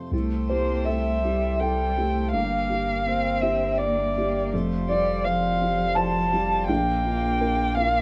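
Neoclassical piano and strings in a tender, intimate 3/4 with a rubato feel, this excerpt sets a woody, boxy upright piano with long sustain under a veiled, con sordino solo violin melody that sits up front from 0.5 s with vibrato and portamento, while a single muted cello carries a second line, a reedy, breathing harmonium holds chords in the background, and a deep, punchy sine sub bass with a pitch-drop attack anchors the low end in light reverb.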